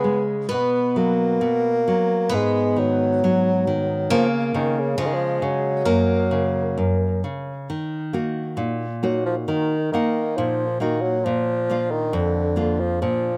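Passionate and longing, this fado-style ballad drifts in a rubato 2/4, with a warm bassoon, soft in attack and touched with light vibrato, singing the melody up front in a classical style through a slapback echo; a shimmering, octave-doubled twelve-string acoustic guitar with fresh strings picks a second line, also carrying slapback echo, until it falls away at 7.2 s, while a full-bodied, fingerpicked nylon-string guitar gives deep, up-front accompaniment across the whole 13.4-second fragment, all captured dry in the open air.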